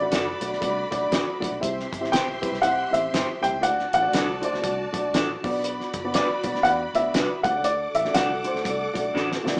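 A swung 120 BPM groove in 4/4 drives this joyful, uptempo 1960s-style soul excerpt in D mixolydian, where a dark, up-front baby grand carries the melody over a lush, bowed string section, a worn, slightly detuned upright piano, a foam-muted, round electric bass, bright twangy guitar stabs through a small old amp and a cloth-damped drum kit with a fat snare, all in a live-room sound with wet reverb and a small-speaker character, moving through D, C and Bm before a drum fill at 9.2 seconds.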